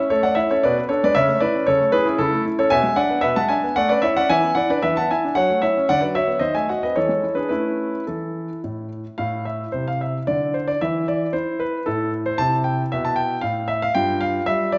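Set in 3/4 at 114 BPM with a rubato feel, this short cut from a longer classical-period piano sonatina moves with graceful, playful poise. A solo grand piano carries everything, sounding clear, intimate and up front, its natural tone spanning G2 to A5 with the clatter of its action audible beneath the notes. The opening stretch sits in A major, touching Bm13, A/C# and E7/B before a passage through F#m7, Bm/D and a D#dim7 that leans into E7 and resolves home to A. At 9.2 s the music turns to A minor, bringing a shadowed contrast that passes through an unharmonized moment before settling on C and closing on a rootless Dmadd11/G at 14.0 s. A recital hall reverb with a 1.4-second decay surrounds the instrument, lending the close, detailed piano a sense of space.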